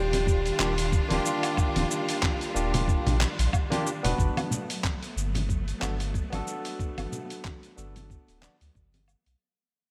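A dark, full-bodied nylon-string guitar carries a fingerpicked melody with slapback echo and digital delay over focused, bowed string chords and a round, deep sine sub bass, the guitar dropping out at 3.5 s in this smooth, sunny sunset chillout cut at 92 BPM with a swung 16th-note feel. Gritty, tape-warm sampler-style drums with cabasa, handclaps, hi-hat and woodblock join vintage, band-limited congas and a thumpy electronic kick, while a bright, barky tine electric piano through a combo amp and tape echo adds accompaniment from 0.6 s. The harmony moves from Ebmaj9 to Gmaj9 as the music fades out from 4.2 s, inside a lush hall reverb with a big arena sound.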